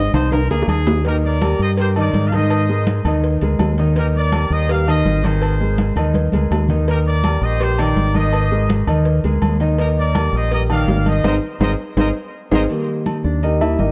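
Salsa in Eb major at a brisk 165 BPM, this festive, danceable passage cut from a longer piece opens with a short trumpet solo, clear and punchy with light vibrato, set back in a roomy space before the bright trumpet section takes over the melody at 1.1 seconds. The section plays tight and vintage-toned, with vibrato and an analog delay, carrying the tune while the harmony alternates between Abadd9 and Eb. Up front, a deep dub fingered electric bass sounds dark and round, joined by an intimate grand piano whose audible action noise adds a polished, present edge to its accompaniment. In the background, thin-skinned, damped congas and ringing metal-shell timbales with agogo bells drive the groove, while a very quiet cowbell and high-tuned bongos add tight detail. Drum fills punctuate the form, a band accent arrives toward the end, and the grand piano takes a solo from 12.7 seconds over the bass and percussion, all within a dark, warm production bathed in moderate spring reverb.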